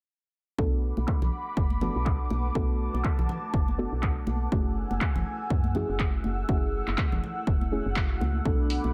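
Smooth and late-night, this deep house excerpt in B dorian moves at 122 BPM with a swung 16th feel, as an up-front, tape-warm electronic kick anchors a woody, round FM bass with tube saturation that pumps beneath airy, breathy pad chords and dark, detuned chord stabs coloured by chorus, phaser and digital delay, while bright, high-tuned congas enter at 1.0 seconds, a punchy analog drum machine adds handclaps and low-passed hi-hat at 1.1 seconds, and a very quiet, blurred granular cloud pad drifts in at 1.9 seconds, all over a Bm7 to F#m9 change within a light digital ambience.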